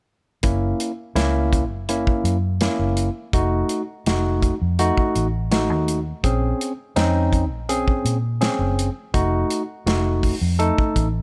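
A barky tine electric piano, a dark, round, foam-muted fingered electric bass and a warm soul drum kit with tight kick and medium-tuned snare all enter together at 0.4 seconds in this soulful, mournful straight-eighth soul blues excerpt, moving through Gb7, F7b9 and Bbm7 up front in a dry, close sound.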